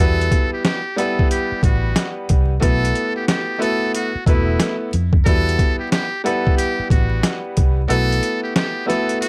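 A muted trumpet, an upright piano and a fingered electric bass open this moody, reflective boom-bap hip-hop excerpt together, with a sampler-style drum kit joining at 0.2 seconds. The trumpet carries a jazz-style solo melody in a brilliant yet thin, buzzy voice, with vibrato, soft attacks and scooped notes. Beneath it, the upright piano sits up front with a clear, woody, long-sustaining tone and a cassette-tape character, while the dark, round, foam-muted bass carries transformer saturation. The pitched-down, compressed drums bring a thumpy kick, a medium-tuned snare and hi-hat in a swung 4/4 groove. The harmony alternates between Emadd9 and B7sus4. The sound is dry and gritty, with vinyl crackle, and near the end the kick drops out at 7.9 seconds and the bass stops at 8.2 seconds.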